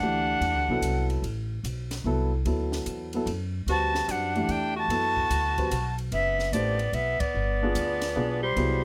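Modal jazz in a lilting 3/4 at 147 BPM, swung and set in D mixolydian, with a searching, open mood in this short cut from a longer piece. A breathy, bright flute carries the melody with vibrato and tongued notes, joined by a clear tenor saxophone on a second line beneath it. Both horns sound briefly at the start, pause at 1.1 seconds, and return together at 3.7 seconds. Throughout, a grand piano with short sustain comps up front, while a woody, thumpy pizzicato upright bass on gut strings anchors the low end. A compact, dry cocktail kit with a high-tuned snare and punchy kick rides softly under the group on hi-hat and ride. The harmony moves from D9 to Bm7/D and then G7b9, with a band accent at 7.1 seconds, all in light reverb.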